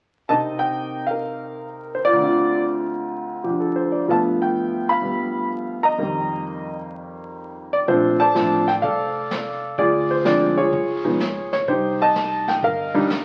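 An intimate concert grand piano with audible action noise and deep bass carries the melody alone from 0.3 seconds in this swinging, sophisticated jazz piano trio excerpt in Bb major at 126 BPM, until a woody pizzicato upright bass and a vintage brush kit with a punchy kick and medium-tuned snare join at 7.9 seconds, all set in a large studio reverb and heard through the crackle of a very old 78 rpm record.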